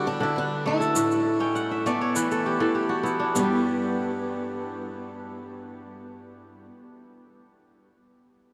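Joyful and hypnotic, this short cut from a longer West African string and xylophone piece sets a picked, swing-style acoustic guitar carrying a boxy melody with audible finger squeak against bright, fingerpicked kora arpeggios that ring crisp and up front through a tape echo. A grainy, band-limited tube shaker with a vintage tint joins at 0.8 seconds and stops at 3.6 seconds, while the kora adds a fill from 1.4 seconds. The whole sits in a huge, wet reverb that suggests a vast, echoing space, and the chords fall away at 3.3 seconds as the second section begins.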